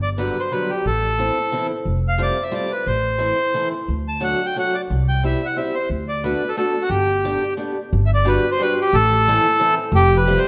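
A reedy, mid-forward accordion carries the melody up front over a dark, pizzicato upright bass from the first moment, with a boxy, picked old ladder-braced acoustic guitar with aged strings joining the accompaniment at 0.2 seconds in this charming, whirling swung musette waltz excerpt, cycling through chords such as Gmaj7, Am and Fadd9 inside a wet recital-hall reverb.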